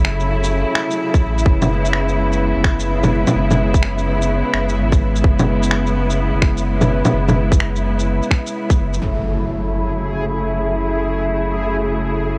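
Future garage with a ghostly, melancholic air, this excerpt sets veiled, con sordino strings in sidechain-pumped, low-pass-filtered chords over a round sine sub bass, while tape-warm, gritty finger snaps, shaker and bongos are joined at 1.1 seconds by a tight kick until a background impact at 9.0 seconds brings a filter sweep on the strings and a reversed, granular texture swelling in from 9.3 seconds, all wrapped in light reverb and cassette tape character.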